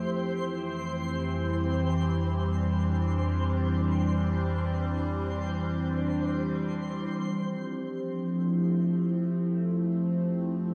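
An evolving wavetable pad sits up front in this peaceful, serene ambient passage in free time and F major, its morphing, chorused and phased chords moving from Cadd9/F to Fmaj7 at 7.1 seconds, where a filter sweep passes over it. Beneath, a deep, ominous rumbling drone with a nasal, detuned edge holds F2 from 0.8 seconds, while a twinkling granular texture adds sparkling octave-up shimmer high above until 7.2 seconds. A lush hall reverb bathes the dark, warm production.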